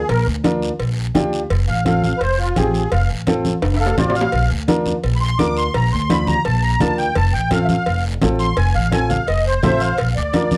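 A reedy, shimmering musette accordion opens this festive, danceable cumbia excerpt, taking a smooth, dark solo up front that runs from the very start to 10.0 seconds. Almost at once a woody, growly pizzicato upright bass and a saturated, compressed cowbell and timbales set enter with a raspy, close guiro. A clear, boxy upright piano and ringing, low-tuned congas join at 0.4 seconds, the piano sitting forward in the mix as accompaniment. A drum fill breaks in at 3.6 seconds while the harmony swings between Bb and F in a straight four-beat groove. Moderate studio reverb and a layer of vinyl crackle give the fragment, cut from a longer piece, a slightly aged, lived-in sound.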